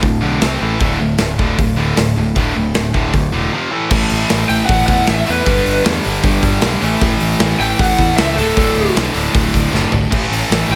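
Light studio reverb surrounds this powerful, anthemic hard rock excerpt, with a big acoustic drum kit placed up front: punchy kick, medium-tuned snare, toms, hi-hat and crash cymbals with a bright sheen. Behind it, three picked electric guitars play riffs together: a crunchy, double-tracked overdriven guitar, a distorted electric guitar with overdrive, and a scooped, high-gain guitar pushed through distortion. A direct, picked electric bass anchors the low end underneath the guitars, while the harmony moves among chords such as D5 and A5. The music shifts into a new section at 3.9 seconds, and at 4.5 seconds a lead guitar through a small cranked amp enters with the melody, its warm, lo-fi overdriven tone trailed by analog delay. A drum fill at 9.7 seconds drives toward the close of the excerpt.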